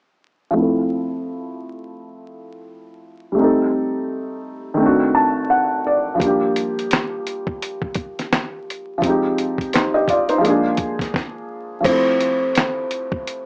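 A dreamy, nostalgic lo-fi hip hop excerpt with a swung sixteenth-note feel, opening on a soft, felt-muted upright piano that carries the chords up front with mellow, intimate tone, short sustain and audible action noise under a low-pass filter and a filter sweep. The piano adds fills between 4.8 and 6.2 seconds and again near the end of the first section, and a brief stop lands just before a new section begins at 11.8 seconds. A dusty soul sampler-style drum kit enters at 6.2 seconds, compressed and gritty with vintage 12-bit sampler crunch, a thumpy kick, a fat snare, hi-hat, handclaps and crash cymbal sitting up front. Near the close a kalimba takes the melody on a single ringing, woody note with a hollow-box thumbnail pluck and a band-limited, vintage character. The whole piece sits in a moderate small room with vinyl crackle and a small-speaker sound, moving through rich jazzy harmony from Fmaj7 through Gm7 and Fm9 before returning home to Fmaj7.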